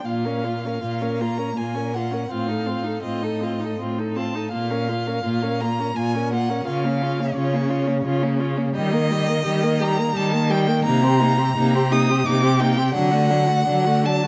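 A rich, focused first violin leads this slow, tender romantic movement for string quartet in Bb minor, its vibrato-laden melody sitting up front while the rich cello, entering at 0.1 seconds, anchors the bass with equal presence. Between them, a second violin with a soft attack and a smooth-topped viola weave expressive bowed lines touched with portamento, moving in a rubato 3/4 at around 75-88 BPM. The quartet sounds in a recital hall with moderate reverb, and this passage is cut from a longer piece.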